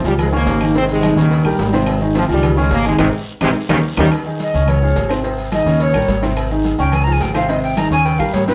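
A punchy, up-front trombone section carries the melody of this joyful, sunny salsa excerpt until 4.0 s, and at 4.4 s a breathy jazz flute with expressive vibrato and a soft attack takes over for a solo. It rides over a clear, long-sustaining upright piano, a thumpy pizzicato upright bass with gut strings, very quiet damped congas and a raspy guiro. Behind them sits a background bed of ringing agogo bells and timbales, grainy maracas, woody claves and a tight high-tuned cowbell, the band heard from further back in a reverberant studio room.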